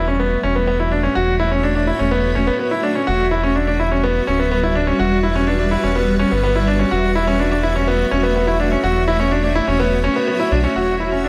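A bright concert grand piano riff opens together with a blurred, granular cloud pad and a round analog bass, setting up melancholic, hypnotic piano-and-strings electronica at 125 BPM in a straight 4/4. The polished, up-front piano carries a delay, while the pad holds sustained chords with a slow attack and long release, and the mellow, ring-modulated bass sits deep beneath, set in a moderate concert hall. The harmony moves between F#m7/E and Emadd9 across this short fragment of a longer piece.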